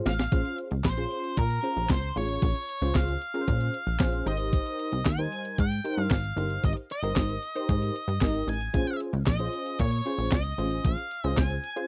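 A dry, close recording carries this late-night, danceable stretch of early-eighties boogie funk, where a thumpy, tape-tinged digital drum machine with handclaps and a plucky, wave-folded analog bass sit up front beneath a detuned, chorused polysynth comp and a dark octave-fuzz lead guitar, all moving from Bbm9 to Abmaj7 and back after a short drum fill at the start.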